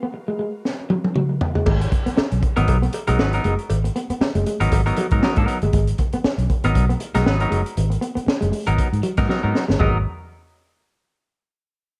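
This cool, driving funk excerpt opens on a break, with a lush, sawtooth-toned string machine holding a soft-attack G#m9 chord in the background, its ensemble chorus giving it a vintage sheen, while an electric guitar at the edge of break-up picks a compressed, slightly broken-up riff. The crunchy breakbeat kit comes in with a fill, its saturated, gritty sound set up front with a punchy kick, a high-tuned snare and dark cymbals under a rolled-off top. At 1.7 seconds the groove settles in at 118 BPM in G# dorian with a lightly swung sixteenth feel, as a vintage muted fingered bass arrives round and foam-muted and a close, dry metallic cowbell plays in the background until 5.4 seconds. A clean, hollow-body semi-hollow electric guitar joins at 2.6 seconds with picked, compressed accompaniment placed up front. The sound stays dry with little reverb, and another drum fill pushes toward the closing section.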